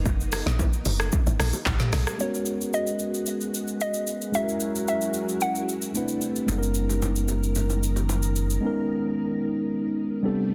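Amapiano at 112 BPM in B major, this soulful, warm fragment opens on a drop, where a woody, punchy log drum bass thumps beneath a hollow, bouncy square-wave pluck melody with chorus and digital delay. A vintage, organ-like ensemble string pad holds soft-attack sustained chords throughout, colored by phaser and ensemble chorus and pumping against the sidechain. The produced afro-pop kit sits up front with a deep kick, woody snare, crisp hats, handclaps, rim clicks, shaker and toms, joined early by bright, band-limited congas and bongos played with hard hands. At 2.2 seconds the log drum gives way to a mellow, clean tine electric piano carrying the harmony through lush chords such as G#m11, F#9 and Cmaj13. At 6.5 seconds a full sine sub bass with an octave arrives as the hand percussion returns, settling on Bmaj13/F# under a dense, heavily limited mix with light reverb.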